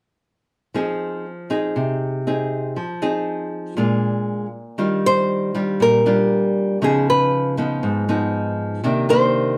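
Bossa nova at 119 BPM in a straight 4/4, this breezy, romantic passage is a brief cut from a longer piece. A fingerpicked nylon-string guitar carries the accompaniment from 0.7 s, its warm, small acoustic tone sitting up front with an audible finger squeak, moving through Fm7 and Bb7 before settling into Ebmaj9, Db9 and Cm9. At 5.1 s a second fingerpicked nylon-string guitar enters with the melody, slightly louder than the accompaniment and likewise small and up front. Both guitars play on until 9.6 s, the passage shifting into a new section just before the melody appears. A wet studio reverb with a short 0.5-second decay places the listener further back in the room with the pair.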